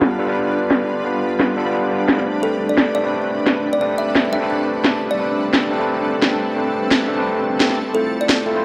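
From the opening moment, a gritty, barky tine electric piano with delay plays up front over a shimmering, ethereal pad with chorus, while a layered electronic snare drum cracks forward with a filter sweep running across the drums. This is a dreamy, rolling slice of liquid drum and bass cut from a longer piece, its chords moving from G7 to Am11 and later to Fmaj7. The pad holds slow-attack, detuned sustained chords with an octave-up granular sheen, sitting beneath the electric piano, and the hats and snare are both low-pass filtered and set in studio reverb. At 2.4 seconds a close-miked kalimba enters with a short, woody thumbnail pluck, carrying the melody through digital delay, and it returns briefly at 7.9 seconds. A lush hall reverb and a dark production tone wrap the whole passage.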